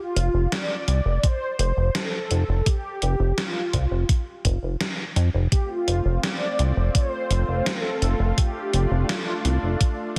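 A dense, heavily limited modern master with light digital ambience frames this nostalgic, dreamy synthwave fragment in a straight 4/4, where a mellow, brassy synth lead carries the melody through chorus, cassette-tape colouring and tape echo. Beneath it sits an up-front, glossy and nasal chorused synth bass, alongside a sampler-style drum machine whose hi-hat and snare ring out in gated reverb, while a thumpy electronic kick joins at 1.2 seconds. At 5.5 seconds a lush, airy unison pad enters with sustained chords, pumping under sidechain compression.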